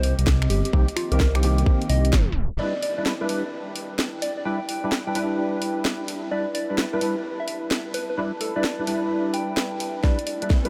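A skippy two-step garage groove at 129 BPM in 4/4, swung on the sixteenths, drives this late-night excerpt, with finger snaps, hi-hat and a cracking snare from the garage kit and a tight, up-front electronic kick. Over a Cm7 chord, a deep, rumbling detuned saw bass beats underneath, while a hollow, organ-like percussive stab with ensemble chorus and delay and a round, gentle, keys-like FM lead with chorus and delay carry the harmony and melody. Behind them sits a warbling, nostalgic lo-fi pad with chorus, its own reverb and sidechain pumping, buried in the background. A band accent lands at 2.1 seconds as a tape stop drags the track down, and by 2.6 seconds the bass and kick have dropped out while the harmony shifts to Em7. At 10.0 seconds a drum fill brings the kick back, and a very quiet electronic riser creeps in at the very end, all inside a dreamy mix soaked in a huge ambient reverb.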